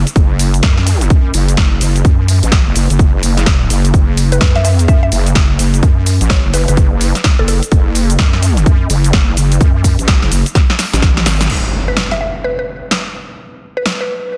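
This is a cut from a longer bass house track that opens straight on the drop: a heavy, wobbling bass sits up front from the first moment, saturated and compressed with chorus and sidechain pumping, moving between F#1 and F#2 in F# minor. A punchy, layered electronic kick drives the 127 BPM pulse, joined by a house kit of crash, hi-hat, cabasa and a punchy snare, all carrying a 62% swing on the 16ths for a swaggering, aggressive strut. Around 4.3 seconds a quieter, woody mallet-like pluck appears with a round, mellow tone, coloured by phaser, delay and a gritty 12-bit sampler edge. After a drum fill, the kick drops out at about 11.1 seconds. A full-band accent follows, and the bass ends at 11.5 seconds as an electronic impact hits and the pluck returns over the remaining kit. The mix is dry and dense, with a loud, heavily limited modern master.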